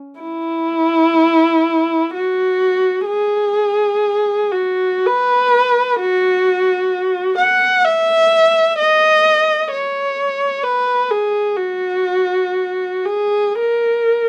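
Lyrical and nostalgic, this short classical passage, cut from a longer piece, features a single viola playing alone in a free, expressive style. The bowed line moves in a gentle triple metre with generous rubato, letting phrases breathe and stretch. The viola's tone is warm and up front, coloured by a singing vibrato and graceful portamento slides between notes. Its melody spans E4 up to F#5, entering at 0.2 seconds and continuing through 14.3 seconds. A light reverb gives the intimate solo performance a touch of space around it.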